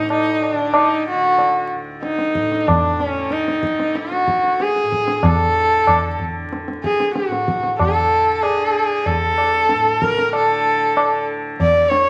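A bowed sarangi and a tanpura drone open this short Hindustani classical passage together, cut from a longer piece and carrying a devotional, meditative mood. The sarangi leads from up front with a clear, focused tone, played by a single bowed player whose melody glides between notes with portamento and light vibrato while its sympathetic strings ring beneath. The tanpura sits much lower in the mix, softly plucked, its bright, buzzing drone shimmering steadily underneath. At 0.1 s the tabla joins with a low-tuned, acoustic sound whose strokes have a short ring, as if heard in a small room. The whole recording is wrapped in a studio reverb and a layer of vinyl crackle, and all three instruments carry on until the end at 12.1 s.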